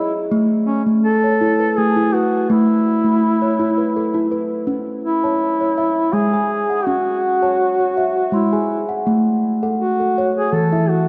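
Hypnotic and gentle, this short world-meditative passage moves at 82 BPM in a straight 3/4, centered on C# minor and cut from a longer piece. A steel tongue drum, struck with firm rubber mallets, plays ringing arpeggios from start to finish, close-miked and dry, with a round, pure, bright tone that sits full and up front. Over it, a duduk carries the solo melody in a folk style. Its mellow voice is shaped by vibrato and scooped notes, and it carries a tape echo and a distant, roomy quality even as it stays forward in the mix. The harmony rests on A, turns to C# minor at 4.7 seconds, and returns to A at 9.1 seconds. A wet echo-chamber reverb and a dark, warm production wrap the whole in a soft, meditative atmosphere.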